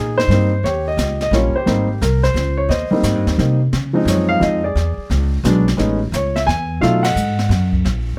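Swinging in a lilting three, this relaxed, sophisticated jazz piano trio fragment sets a warm, short-sustained grand piano melody up front beside a woody, growly pizzicato upright bass, while a brushed kit with dark cymbals, a high-tuned snare and a boomy kick joins at 0.2 seconds; the trio moves through shifting chords to a full-band accent at 7.0 seconds before the piano drops out at 7.7 seconds, all captured dry and close in fine detail.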